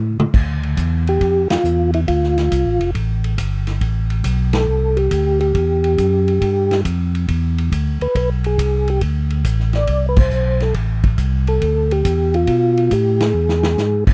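Late-night and smoky, this soul jazz organ trio cut swings at 138 BPM in A minor, with a fat, clean tonewheel organ bass through a stopped rotary speaker and a big-room acoustic drum kit whose punchy kick and medium-tuned snare sit up front, opening with a short fill at 0.0 seconds. From 1.1 seconds a soft, flute-like percussive tonewheel organ carries the melody with second-harmonic percussion, chorus vibrato and a slow rotary speaker, while band accents land at 1.4, 4.5 and 10.1 seconds. The dry, close recording has a 1970s studio character, and the chords move from Dm through Am7 and E7 to a G9 before arriving on a closing E as another drum fill kicks in.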